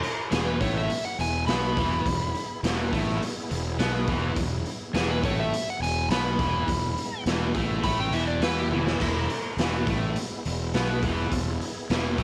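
This is a raunchy, driving blues rock power trio track with a southern rock streak, moving at 104 BPM in a straight 4/4 feel in E major, cut from a longer piece. The garage drum kit sits up front with a punchy kick, a medium-tuned snare, hi-hat, crash and toms, all saturated and lo-fi with a muffled, rolled-off top that still carries the bright ring of a stone room; a drum fill lands at 8.7 seconds. At 0.3 seconds the picked, double-tracked distorted electric guitar drives the low riff, while a growly, fuzz-soaked fingered bass digs in beneath it. An overdriven slide guitar carries the melody through 9.3 seconds, its tone thickened by slapback echo. Far back in the mix, a very quiet tonewheel organ holds thick, gritty sustained chords with percussive attack, chorus vibrato and rotary speaker churn. Light reverb and small room ambience give the whole performance a close, raw feel.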